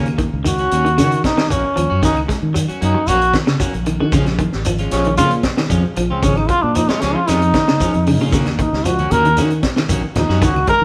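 Driving and defiant, this afrobeat cut from a longer piece moves in a straight four-beat feel, with the band sounding as if it plays live together in a stone room of moderate reverb. A muted trombone with a metal mute carries the solo melody from 0.5 seconds, sitting up front with a buzzy, brilliant, thin tone, smooth on top and shaded with vibrato in a pop style. Beneath it, one slightly broken-up, picked electric guitar plays twangy, warm arpeggios, while a second guitar adds bright stabs bathed in spring reverb. Fingered electric bass, direct and amped, anchors the low end, and a vintage acoustic drum kit with a punchy kick, high-tuned snare, hi-hat and rolled-off top sits mid-forward in the mix. Grainy, mellow shekere fills in the background alongside very quiet woody claves, and low-tuned congas with a thin skin join at 8.3 seconds as the harmony moves from Ebm7 to Bbm7 and back to Ebm7.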